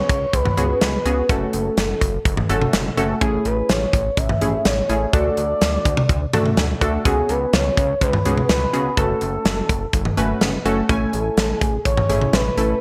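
A smooth synth lead, a funky polysynth comp and a chorused synth bass open this cool, nocturnal synth-pop excerpt together, and a punchy studio drum kit joins at 0.1 seconds in a straight 4/4. The expressive sawtooth lead carries the melody with vibrato, a moving notch filter, chorus and delay, its tone dark and evolving. Beneath it, the detuned polysynth comp mixes sawtooth, sine, ring modulation and wave-folding with a filter sweep, while the glossy, retro bass blends pulse-wave and sawtooth tones with pulse-width modulation and a plucky filter. The acoustic kit of hi-hat, kick, snare and toms sits up front and mid-forward, with a medium-tuned snare and gated reverb. The harmony moves through C#7sus4, F#m, Amaj7 and D, all within a bright 1980s-style digital production with a moderate plate reverb and small room ambience.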